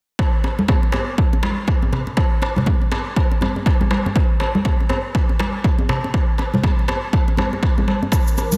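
Earthy and warm, this short afro house excerpt moves at 121 BPM in 4/4 with a swung sixteenth-note feel. A punchy, layered electronic kick drum sits up front from 0.2 seconds, its overdriven tone dressed in studio reverb. Crisp, metal-shelled darbuka played with hard hands sounds distant in a large room, while ringing congas sit close and acoustic, entering at 0.4 seconds. Near the end, an overdriven electronic shaker slips in at 8.1 seconds, and an ethereal, airy pad built from detuned sawtooth and triangle voices arrives at 8.3 seconds in the background, bright and slow to bloom, with ensemble chorus, phaser, built-in reverb, 12-bit sampler grit and sidechain pumping. The mix carries light reverb and studio ambience under a dense, heavily limited modern master.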